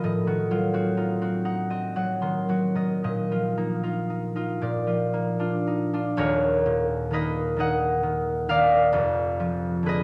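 A solo concert harp carries this short classical piece on its own, fingerpicked and ringing, with a warm, up-front presence across a range from Eb1 to C6. The mood is gentle and wistful, set in Eb minor at a slow 36-44 BPM counted in dotted quarters, with a rubato feel over a 6/8 metre and tuning at A4 = 442 Hz. The harmony opens on an Adim7, moves through Bbsus4 to Bb, then settles on Ebm at 6.2 seconds as a new section begins, closing on Bb7/F. A wet recital hall reverb with a 1.4-second decay surrounds the acoustic harp and lends the plucked tones a lingering bloom. This brief cut of a longer piece runs 10.0 seconds.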